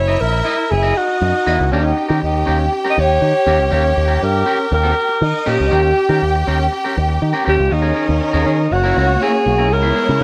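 A straight 4/4 disco groove at 120 BPM drives this danceable excerpt, where a breathy, distant alto saxophone with light vibrato carries the melody up front over a lush bowed string section, a bright picked bass with an envelope filter, and clean picked electric guitar entering at 0.1 seconds, all in light reverb, with chords moving from F#6 and D#7 to D#7sus4, F#7 and C#m7 as a new section arrives at 7.7 seconds.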